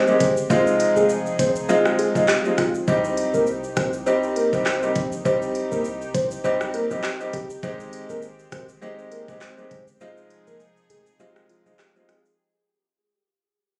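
A dark, round synth lead with a sub-octave layer, chorus and tape echo opens this sultry, hypnotic dancehall excerpt at 101 BPM, over a smooth, detuned sawtooth pad that pumps in the background and a deep, boomy 808-style bass. A clear, up-front grand piano and an electronic island pop kit join at 0.1 seconds, with a knocking kick, smooth hats, handclaps, rim clicks and shaker swung on the 16ths and roughened by a gritty 12-bit sampler character, as the harmony moves through Abmaj7, Fm7 and Cm. The whole passage fades out, with a break from 10.0 seconds, and the compressed sound has the feel of a phone capture in a room.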